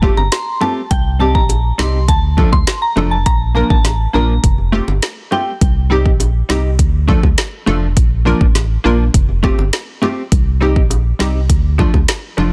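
A dense, heavily limited modern mix with little reverb frames this short cut from a longer dancehall piece, moving at 102 BPM in a straight 4/4 in C dorian with a hypnotic, bouncy mood. An electronic afro-pop drum kit sits up front, its deep kick, woody snare and metallic hi-hats roughened by overdrive, while tight, high-tuned bongos add a small-room acoustic tick lower in the balance. Beneath them an organ-like FM bass, hollow, percussive and dark with a fast attack and decaying tail, holds the low end. A crisp, detuned wavetable chord stab with a wave-folded filter pluck and a dark, fingerpicked nylon-string guitar playing classical arpeggios trace a looping Fadd9, Cm, Dm, Bb progression. A soft, pure synth bell melody, treated with chorus, phaser and delay, floats high above from 0.2 to 5.4 seconds before dropping out, and the drums stop at 12.2 seconds.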